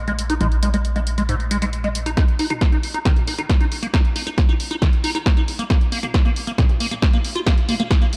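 A punchy, saturated analog bass plucks alone at the start of this short cut from a soaring, driving uplifting trance track at 136 BPM, quickly joined by a squelchy, resonant acid bass playing arpeggios through phaser, lush chorus, dub echo and sidechain pumping while a filter sweeps across it. A dry analog drum machine adds high-passed hats, snare and toms. At 2.2 seconds the bass pluck stops and a layered, up-front electronic kick drives a build-up with a drum fill, all set in a dark production with light reverb.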